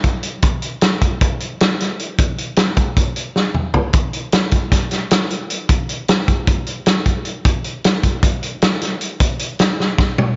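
A loose, gritty acoustic indie drum kit of hi-hat, punchy kick, medium-tuned snare and toms opens this intricate, playful rock passage in a straight 9/8, sitting up front and saturated with a mid-forward, rolled-off top in a lush hall reverb, with drum fills at 3.4 s and 9.8 s before the cut from a longer piece ends.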